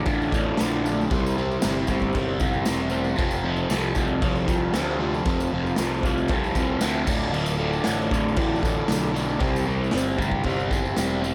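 Raw and menacing, this garage rock excerpt drives along at a straight 115 BPM in D minor, cycling through Dm, C and F. Up front, a crunchy, double-tracked overdriven guitar riff carries a phaser, while a growly fuzz picked bass adds overdrive underneath, and a gritty garage kit with punchy kick, medium-tuned snare and crash cymbal sounds saturated in a pumping stone room. In the background, a vintage combo organ holds mellow sustained chords with heavy vibrato and lush chorus, and a jingly tambourine plays beneath it, with light reverb on the mix.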